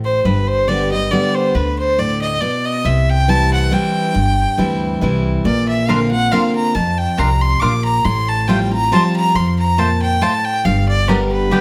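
A clear, biting fiddle carries the melody from the start over picked dreadnought guitar and thumpy pizzicato upright bass in this rustic, driving bluegrass piece in 3/4, its swung eighths giving the triple time a loping push. The nasal, lightly vibratoed fiddle sits up front with slapback echo and plate reverb, soloing throughout as the chords move from G through C, Bbadd9 and Fadd9/A back to G. At 5.9 seconds a woody, double-strung mandolin joins with bright stabs, all within a moderate studio room in this short excerpt cut from a longer piece.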